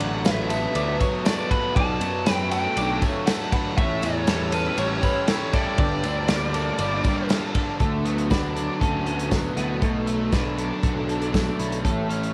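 A loose indie drum kit sits up front with a tight kick, medium-tuned snare, hi-hat and ride, all with a rolled-off cassette top, driving this blissful, dreamy shoegaze and dream pop rock excerpt while a dark, smooth overdriven lead guitar carries the melody through tape echo. Behind them, a clean semi-hollow guitar plays chorused arpeggios, two picked overdriven guitars, one biting with reverse reverb and one raw garage tone, share a riff in the background, and a round, punchy fuzz bass anchors the low end beneath a very quiet jingly tambourine. An icy, crystalline, warbling pad holds airy sustained chords until 7.8 s, and the whole piece has the light reverb and character of a home recording on cassette.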